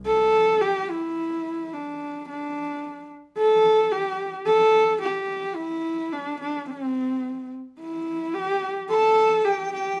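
A band playing live in one room, with light reverb, opens this short cut from a longer Mongolian folk piece. At a straight 108 BPM in 4/4, the music sits in C gong mode with instruments tuned to A4 = 437 Hz, and the mood feels proud and vast. A single bowed horsehead fiddle carries the melody from 0.1 seconds, up front, close and husky, its horsehair strings giving a warm, soft attack with expressive vibrato and sliding portamento between notes of its C4 to A4 range. At 8.9 seconds a bamboo dizi slips in quietly as a second line, high in its G5 to C6 register, breathy and tongued, with a buzzing membrane, a warm vibrato and a slightly unsteady tone. The two play together only in the final second before the cut ends at 10.0 seconds.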